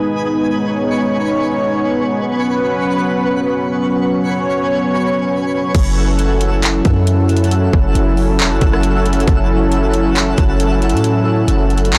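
A blown-out, overdriven recording in a digital ambience frames this spacious, hazy stretch of atmospheric cloud-rap, cut from a longer piece, at 136 BPM in a half-time 4/4 feel and F# dorian. From the opening, a smooth, airy analog pad of detuned sawtooth and square waves with a sub octave holds sustained chords through chorus and sidechain pumping, moving from G#m to Bsus2, while a twinkling, bright granular texture with octave-up shimmer sparkles softly above it in its own reverb. At 5.7 seconds the harmony settles on F#m7 as a deep, boomy 808-style bass with transformer saturation arrives alongside an up-front trap kit of hard-clipped kick, metallic hi-hats, handclaps, rim clicks and crash cymbal.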